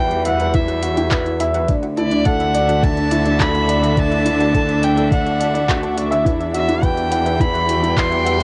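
A straight 4/4 pulse at 105 BPM drives this cinematic, hypnotic piano-and-strings electronica fragment, where a thumpy, muffled electronic kick drum joins at 0.5 s beneath deep house handclaps and metallic, overdriven hi-hats, a dark, woody upright piano riff, lush bowed double basses with tube saturation and sidechain pumping, a pumping chamber string section holding rich sustained chords, a very quiet analog pluck tracing round arpeggios, and an up-front solo violin carrying a biting, earthy melody over Emadd9 and Dadd9 harmony, all with a tape-worn, home-cassette character.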